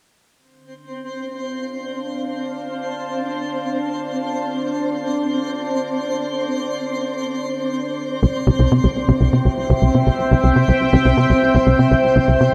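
Drenched in a wet shimmer reverb with a 7.7-second tail, this cosmic, expansive slice of sequencer-driven space music in D minor moves at 122 BPM in a straight 4/4. A bright, detuned, resonant pad fades in from 0.4 seconds with slow-attack, chorused chords on Dm, while a twinkling granular texture with an octave-up FM shimmer and built-in reverb sparkles just beneath it. At 8.2 seconds, as the harmony shifts to C, a tight, punchy sequencer bass with sawtooth and square-wave edges, ring modulation and a plucked filter drives an up-front riff through analog delay.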